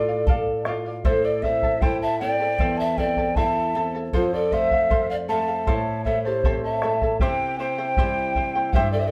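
Melancholic and earthy, this short Andean folk excerpt moves at 78 BPM in a straight 2/4 in A minor, with a breathy, end-blown cane quena carrying the melody up front, its vibrato and soft attack bathed in plate reverb, while a bamboo pan flute adds an airy second line with crisp chiff and straight tone. Beneath them a shimmering fingerpicked charango with double strings and a brilliant, classical nylon-string guitar supply accompaniment through chords moving from Dm to Am, F and C, as a deep, dark bombo enters at 0.3 s. The ensemble sounds heard from further back in a reverberant studio room, shifting into a new section at 7.2 s before the cut at 9.1 s.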